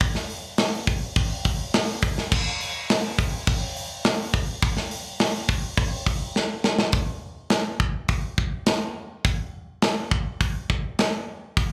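Heard through a club PA with light reverb, this short live cut from a longer metal piece features a tight, up-front acoustic drum kit, its tight kick, medium-tuned snare, hi-hat and crash sitting mid-forward at a straight 104 BPM in 4/4, driving a relentless, heavy groove until a drum fill at 6.4 seconds pushes into a new section at 6.9 seconds that runs to the end.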